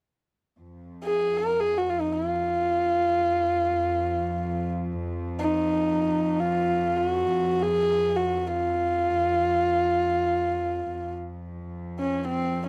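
Turkish makam ensemble music in a melancholic, soulful mood, cut from a longer piece, where a rich, nasal chamber cello section holds a low gut-string drone from 0.6 seconds while a single warm kamancheh enters at 1.0 seconds, up front and intimate, with an airy bow, soft attack, light vibrato and gliding portamento, all captured in a dry, close 1970s-style studio sound.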